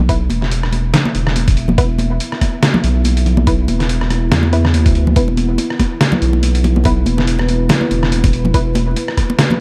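Meditative and cavernous, this deep dubstep passage at 142 BPM rolls in a half-time 4/4 with swung sixteenths: a thick, saturated sub bass and a gritty, pitched-down trip hop sampler kit of hi-hat, rim click and snare sit up front alongside a knocking, tape-warm electronic kick, while bright, dry congas in the background and muted, filtered dub chord stabs both trail dub echo, and a moody, detuned ambient pad with chorus and reverb enters at 0.9 seconds with a slow attack, all set in a dark production flecked with vinyl crackle.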